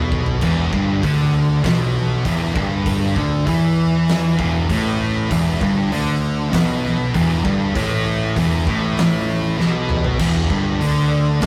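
A straight 4/4 pulse at 98 BPM drives this hypnotic, ominous stoner and doom metal excerpt in E minor, cut from a longer piece and sitting on a single Em chord. A thick, dark fuzz guitar riff sits up front from the start, joined by a second fuzz guitar riff kept very quiet until it stops at 10.2 seconds, while a tight, bright, double-tracked distorted guitar plays a low riff between E2 and E3. Underneath, a growly overdriven electric bass picks out the bottom from E1 to E2, held in the background. An oversized, low-tuned acoustic kit enters at 0.1 seconds with a boomy kick, fat snare, dark cymbals, hi-hat and toms, its big pumping room sound saturated, gritty and pushed forward, with drum fills opening the passage and again from 9.6 seconds just before a brief new section. The whole take has the rough feel of a rehearsal room, with moderate reverb and a saturated glow.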